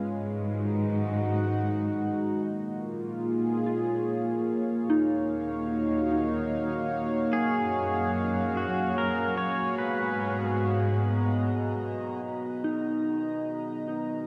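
Ambient music in B lydian at 73 BPM in 3/4, luminous and weightless, carried by an up-front warm analog pad of smooth, mellow sustained chords with chorus, beneath which a lush bowed cello section holds the bass and fades in from 2.4 s, while a pure FM synth bell plays chorused, tape-echoed arpeggios in the background and a twangy pedal steel guitar adds a slide melody with tape echo from 7.3 s, the whole set in a wet cathedral reverb with a dark, warm production.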